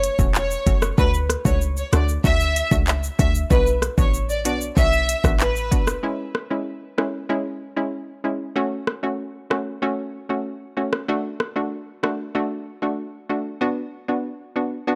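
A bouncy, tough dancehall groove in F# minor at 95 BPM opens with a lush bowed violin section carrying the melody, a hollow square-wave pluck, a punchy 808-style bass and an electronic afro-pop drum kit all sounding together. The violins are smooth and close, with vibrato and a tape echo, and they drop out at 5.8 seconds, while the short, tight bass with its fast attack and decaying sine tone stops at 6.0 seconds. The drum kit sits up front with a deep kick, smooth hi-hats, handclaps, rim clicks and shaker, and it carries on until 12.2 seconds. The detuned, bright pluck, treated with chorus, sidechain pumping, ring modulation and a filter sweep, keeps playing the accompaniment alone to the end of this cut-from-a-longer-piece fragment. Chords move from F#m through D and Bm, then C#m back to F#m, D and Bm. The sound is dry and gritty, with a hardware character and little reverb.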